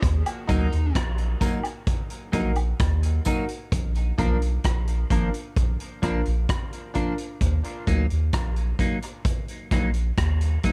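A straight 4/4 groove at 65 BPM from a punchy, up-front vintage drum kit with kick, hi-hat and rim click drives this heavy, hypnotic dub reggae piece in Eb harmonic minor, where a deep, round sub bass sits forward, a twangy clean electric guitar with analog chorus and dub echo and intimate grand piano stabs with audible action noise and dub echo enter at 0.5 seconds, a dark, distorted lead guitar with dub echo lingers in the background for the first second, and echoed woodblock and tambourine sit quietly behind until 3.5 seconds, set in a small room over chords moving from Ebm to Bb and back.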